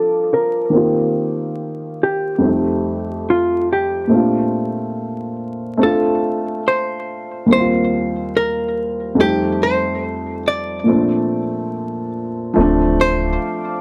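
Mellow and dreamy, this swung hip hop excerpt sets a clean, hollow-body electric archtop guitar melody up front over a woody, boxy upright piano with cassette-tape colour, both softened by a low-pass filter beneath a filter sweep that runs until 12.6 seconds, when a full sine sub bass with octave enters briefly, joined at 13.2 seconds by a moody, detuned ambient pad with chorus sitting faintly in the background, the whole set in vinyl crackle and a wet small-room reverb.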